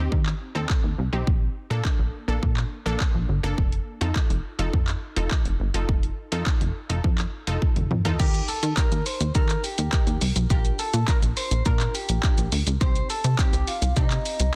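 Dance-pop at 104 BPM in Bb major with a summery, carefree mood, built on a punchy, up-front pop drum kit of kick, handclaps, hi-hat, shaker, crash, toms and a soft-clipped snare, a funky wave-folded analog bass and a lush detuned unison pluck both pumping with sidechain, until a drum fill at 7.6 seconds ushers in a slightly broken-up electric guitar melody at 8.2 seconds over Eb, Bb and Cm chords, all in digital ambience with a dense, heavily limited modern master in this excerpt cut from a longer piece.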